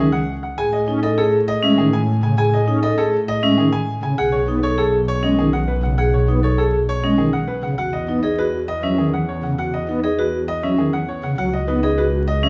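Minimalist classical pattern music in a hypnotic, urgent mood, this 12.5-second passage cut from a longer piece moves in a straight triple metre. A bright, brilliant grand piano carries the melody with short, open notes. Vibraphone struck with hard mallets spins metallic, ringing arpeggios through a fast motor vibrato, its tone boxy and warm. Underneath, a pipe organ's string stops and celeste give a soft, shimmering, romantically voiced accompaniment, while a rich symphonic double bass section plays bowed, smooth and even lines with a light vibrato. The harmony drifts through suspended and added-note chords, from C#sus2 and Amaj7 to Badd9 and Emaj7sus2, all set in a large studio reverb with a layer of vinyl crackle.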